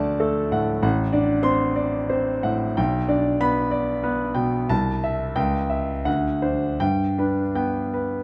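Close, detailed microphones place the grand piano up front, its smooth, vintage tone carried by a moderate recital hall reverb that lingers for about 1.5 seconds. This is a short romantic character piece for solo piano, warm and lyrical in mood, moving in 3/4 with a flexible, rubato feel. The piano covers a generous span, from deep A1 in the bass up to C6 in the treble, and plays alone across the full 8.2 seconds. The harmony opens on D and a D7 over A, settles onto G over B around 2.8 seconds, then passes through A minor over C, a C sharp diminished chord and D7 before arriving home on G at 6.8 seconds. Lifted from a longer work, the passage feels like a warm, lyrical excerpt drawn from a larger whole.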